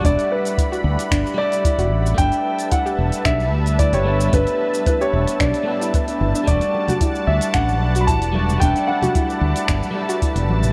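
Sunset chillout at 112 BPM in E minor, relaxed and wistful, where a warm grand piano carries the melody through digital delay over a slightly broken-up electric guitar, a thick, detuned sawtooth pad with chorus and a mellow, round pluck playing arpeggios in the background, all anchored by a dark, punchy fretless bass up front and a deep analog-style electronic kick, with a smooth R&B kit of finger snaps, metallic hi-hat and shaker, soft-handed bongos and congas entering very quietly at 6.6 seconds, and an airy, breathy wind-like texture drifting in at 7.2 seconds, as the harmony moves between Em11 and G69 inside a lush hall reverb and the worn, warbling pitch drift of old cassette tape.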